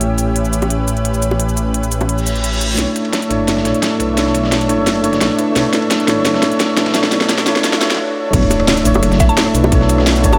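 This melancholic, soulful liquid drum and bass passage, cut from a longer piece, opens on a worn, slightly out-of-tune tine electric piano under a filter sweep and dub echo, over a thick chorused pad that pumps against the beat, a menacing saturated detuned saw bass, an up-front kit of cracking snare and crisp hats, and round, close bongos. A very quiet reverse cymbal swells just before 2.8 s, where a gritty sampler-style kit with ride and snare enters in the background as a drum fill carries the build-up, while a very quiet riser climbs beneath. The drop lands at 8.3 s with a tight, tape-warm electronic kick and a soft impact, and a woody FM pluck adds a brief chorused, echoing melody, all set in a lush hall reverb.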